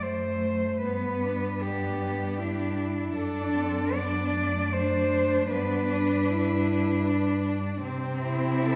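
A rich, up-front bowed cello carries the melody with smooth vibrato in this serene classical piece for cello ensemble, a fragment of a longer work in G major at 77 BPM in a rubato 3/4, tuned to A4 = 441 Hz. Beneath it a more distant cello shapes a second line, a focused cello supplies the accompaniment, and a present bass cello adds soft-attacked, expressive portamento, each player using vibrato. The harmony moves gently between G and D7 before touching C at 7.8 s, all bathed in the lingering 1.7-second reverb of a church or concert hall.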